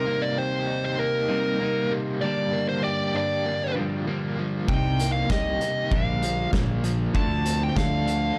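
Three picked guitars open this moody, bittersweet indie rock fragment at 97 BPM in G minor: a smooth, dark lead carries the melody up front in plate reverb, over a tremolo-shimmered overdriven riff and a sludgy distorted riff bathed in lush chorus, all moving through Cm7, Gm7 and Dm7. At 4.7 seconds a fuzz-thick picked bass and a loose, gritty acoustic drum kit join, with a punchy kick, medium-tuned snare, hi-hat and a pumping room sound, all inside a warm production with light reverb.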